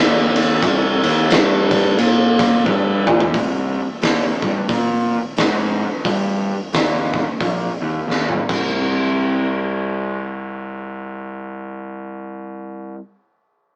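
A swung 4/4 groove at 88 BPM drives this ominous, sludgy stoner and doom metal excerpt in C minor, where an up-front, fuzzy picked electric bass with overdrive growls low from the start, joined at 0.4 s by an oversized, low-tuned acoustic drum kit with a fat snare, punchy kick, gritty saturation and a bright, pumping stone-room sound that throws in fills around 2.7 s and 8.1 s before dropping out at 8.6 s, leaving the bass alone until 12.9 s, the whole captured as a rough rehearsal-room recording with light reverb and a small-speaker sound.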